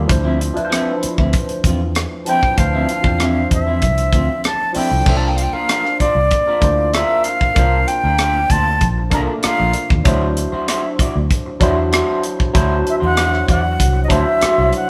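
Set in a moderate stone room with the band playing live together, this smooth, silky excerpt of lush 1970s-style soul pairs a tight, up-front funk drum kit and a dark, round, foam-muted fingered electric bass with a barky tine electric piano through a phaser and a twangy, slightly broken-up guitar riff from a small old amp, before a breathy, close-miked concert flute enters with the melody at 2.3 seconds over shifting Dm9, C9sus4 and D9 harmonies.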